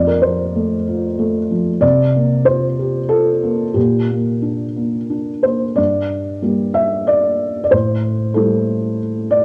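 Unhurried and rubato, the music sways in a triple metre, letting each bar stretch and settle as it likes. This is reflective, melancholic neoclassical minimalism, a short passage cut from a longer piece and carried entirely by a felt-muted upright piano playing solo from 0.0 to 9.4 s. The piano sits up front with a dark, boxy, intimate tone, its range reaching from the low F2 up to E5. Harmonies drift from F through C7sus4 and Gm/Bb, then a second section arrives at 5.8 s on Gm before moving to Am7. A moderate spring reverb and small-room ambience surround the instrument, and the cassette tape colouring adds to the feel of a private home recording.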